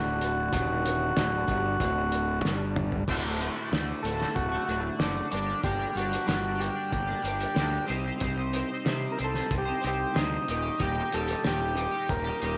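A moderate echo-chamber reverb surrounds this psychedelic rock excerpt, moving at 93 BPM in a straight 4/4 in D phrygian dominant, with a mysterious, trippy mood. A buzzy vintage combo organ carries the melody up front, dressed in spring reverb and tape echo, while a twangy, bright twelve-string electric guitar plays a riff through a rotary speaker. Underneath, a fuzz-laden fingered bass sits up front with an overdriven growl. A cloth-damped drum kit thuds along with a fat snare, tight kick and dark, muffled cymbals, its gritty, lo-fi tone rolled off at the top. A soft, flute-like tonewheel organ holds sustained chords in the background through slow rotary and chorus vibrato, but only until 3.0 s. A drum fill at 2.4 s leads into a new section at 3.1 s, where the harmony moves from D through Gm, Cm and Eb.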